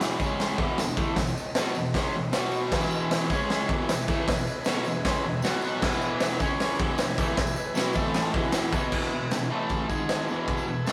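Raw and swaggering, this short garage rock cut drives along at 155 BPM in a straight 4/4, sitting in E major. A distorted, double-tracked fuzz guitar riff runs from the start, bright and picked, sharing the front of the mix with a raw acoustic drum kit whose punchy kick, medium-tuned snare, hi-hat and crash are saturated and gritty, with a rolled-off top and a pumping stone-room sound. A jingly tambourine rings in the background, distant as if in a large room. At 2.7 seconds a vintage combo organ enters with clean, reedy sustained chords carrying a light vibrato, tucked behind the band, and it breaks out with a short fill at 8.2 seconds just before the music moves into a new section at 8.9 seconds. The whole thing has the rough, lively feel of a rehearsal-room recording, wrapped in a wet studio reverb.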